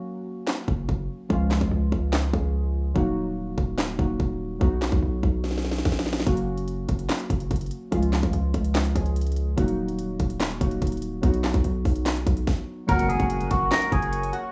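Warbling, nostalgic lo-fi synth keys with a detuned chorus shimmer open this triumphant yet wistful half-time trap excerpt, joined almost at once by up-front electronic drums (hard-clipped kick, sharp snare, crisp hats and handclaps) and a heavy, aggressive distorted 808-style bass, with a drum fill arriving at 5.4 seconds. After a brief stop at 12.5 seconds, the music lands at 12.9 seconds on a new section where a clean, twangy, picked electric guitar takes the melody through tape echo up front. A smooth vintage analog pad, a very quiet electronic impact and a short, breathy, distant jazz flute note sit behind it, all in a rough home-demo mix with digital studio ambience.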